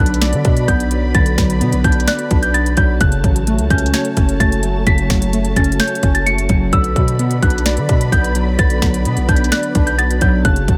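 A distorted 808-style bass anchors this brooding, eerie trap excerpt, its heavy, aggressive sine tone carrying a noise layer with a fast attack and decaying tail. Set at 129 BPM in 4/4 with a half-time feel in B minor, the cut moves from Bm to F#m at 3.0 seconds and back to Bm at 6.7 seconds. Above it, a small celesta plays a delicate, bell-like melody high in its register, sweet and bright from hard felt hammers, softened by a low-pass filter and trailed by delay. Glassy digital keys fill in the accompaniment with a detuned, wave-folded sine tone, a filter sweep and chorus, while a dark studio string section holds lush, woody bowed chords with vibrato and a smooth top. The trap drum kit sits up front from 0.1 seconds, pairing a hard-clipped kick and sharp snare with crisp hi-hats and finger snaps, all inside a digital ambience.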